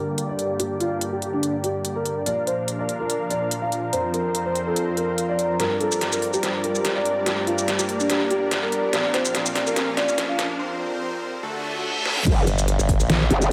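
A growling, saturated bass bursts in at the drop at 12.3 seconds, joined by a punchy kick and a sawtooth wobble bass with a formant filter, giving this chaotic, menacing heavy wobble dubstep fragment its brief, aggressive payoff. Before that, a boxy, mellow grand piano carries the melody through tape echo over huge detuned supersaw chords with sidechain pumping and a filter sweep, while a moody ambient pad with chorus sits in the background. Crisp hats, a deep snare and toms drive the build-up and a drum fill. Electronic risers lead into a short break from 10.6 seconds, and a reverse cymbal then swells toward the drop, where an impact lands, all within a lush hall ambience.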